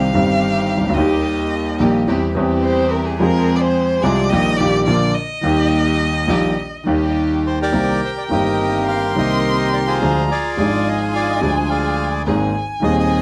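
Dramatic and tense, this tango moves at 107 BPM in 4/4 with a rubato feel, beginning in Eb major and turning to C minor at 7.7 seconds. A rich, expressive violin carries the opening as the featured solo voice, bowed with vibrato and portamento, and it sits distant in the mix. A smooth, vintage-sounding grand piano supplies the up-front accompaniment throughout, ranging down into the deep bass, while a dark chamber string section adds soft-attack stabs, played sul tasto with light vibrato in the background. At 7.5 seconds a reedy bandoneon enters up front to take the melody, and the violin continues as a second line alongside it. Closely miked with light reverb, the recording has a detailed sound, and it is cut from a longer piece.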